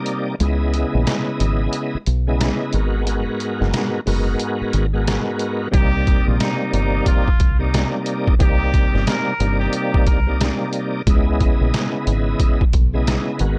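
A bright tonewheel organ accompanies this gritty, moody boom-bap hip-hop excerpt, its shouting, lightly overdriven tone colored by chorus vibrato, key click, a slow rotary speaker and a cassette-tape haze. Underneath, a pitched-down, compressed sampler-style drum kit sits up front at 90 BPM with a 63% 16th-note swing, pairing a thumpy kick and medium-tuned snare with hi-hat and rim click. A deep, foam-muted fingered electric bass adds a dark, round low end, moving through minor ninth chords from Dbm9 to Abm9 and Cm9. The opening break gives way at 5.7 seconds to a straight-muted trumpet, nasal and brilliant with vibrato, sounding distant and roomy through tape echo until 10.4 seconds. Light reverb lends the whole groove a touch of space.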